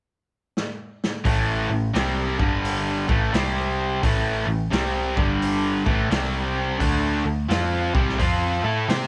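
Swaggering and gritty, this blues rock and southern rock power trio cut struts along with a swung eighth-note feel in 4/4. A raw garage drum kit opens with a fill at 0.6 seconds, its boomy kick, medium-tuned snare and hi-hat sounding distant and roomy with a rolled-off top. At 1.2 seconds a cranked stack guitar storms in up front, bright and overdriven, its picked, double-tracked riff moving through A5, G5, C5 and finally D5 power chords. A vintage muted electric bass joins at 1.3 seconds, dark, round and foam-muted, sitting low beneath the guitar. A small room reverb surrounds the trio, and the passage is cut from a longer piece.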